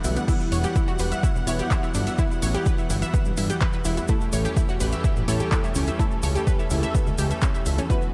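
An overdriven deep house kit of hi-hat, handclaps and crash cymbal and a grainy cabasa in the background open this dramatic, cinematic melodic techno excerpt, with a punchy, overdriven electronic kick entering at 0.3 seconds to drive a straight pulse. A fat, saturated sawtooth bass sits up front, while bright detuned pluck arpeggios with chorus and tape echo and a lush, bowed string section holding sustained chords both pump against the kick. A brassy, phased synth stab punches in from the background at 0.3 seconds, over a very quiet, warbling vintage drone, all set in a light reverb.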